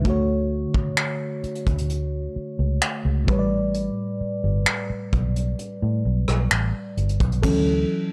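A mellow FM electric piano sits up front in this short, dreamy contemporary R&B fragment, its round, full-bodied tone carrying a fast attack that decays, with a touch of chorus and a noise layer. The piece moves at a slow 65 BPM in 4/4 with a straight feel in D major, the harmony drifting from Dmaj7 to A9sus4 at 3.3 seconds before settling back on Dmaj7 at 7.4 seconds. Underneath, a vintage muted fingered electric bass adds a dark, foam-muted, amped low end that is punchy and close. A soft brush drum kit plays kick, hi-hat, rim click, finger snaps and crash cymbal, its acoustic sound roomy and distant despite a punchy kick. Studio reverb wraps the tender mood, and the clip, cut from a longer piece, ends at about 8.1 seconds.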